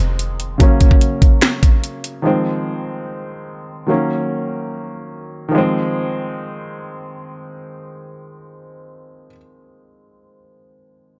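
The recording is dry, with little reverb, and this short cut from a longer trap piece sits in F phrygian at 146 BPM in a half-time 4/4 feel, tuned slightly low to A4 = 436 Hz. It opens with a punchy, tight 808-style bass hit on F1, a sine tone with a fast attack and a noise layer that decays and ends by 0.6 s. The electronic, up-front trap kit arrives at 0.2 s with a knocking kick, sharp snare, metallic hi-hats and finger snaps, then drops out at 2.1 s. A warm grand piano carries the accompaniment across the full 11.2 s, its smooth, vintage tone and short sustain moving through Fm7, Gb and Ebm7 between Db3 and Db4. The mood is hard-hitting yet melancholic, with the piano playing by itself once the beat stops.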